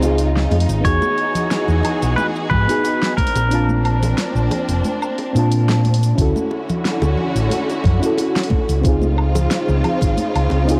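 Smooth and warm, this sunset chillout clip, cut from a longer piece, drifts along in a straight 4/4 feel. A mellow FM electric piano with a soft, vintage, warbling tone carries the accompaniment through chorus and delay, while a lush, bowed symphonic string section holds sustained chords with expressive vibrato beneath it. Up front, a round, punchy fingered electric bass anchors the low end, joined by a fat-snared deep house kit with hi-hat, shaker and woodblock, plus close, dry congas and bongos tucked into the background. At 0.8 seconds a twangy pedal steel guitar enters with a clean, fingerpicked slide melody, volume swells and digital delay, playing until 5.8 seconds, as a knocking electronic kick also arrives, dropping out at 3.5 seconds before returning at 6.2 seconds for the second section. Light reverb and digital ambience surround the mix, which carries the worn character of old cassette tape with a warbly pitch drift.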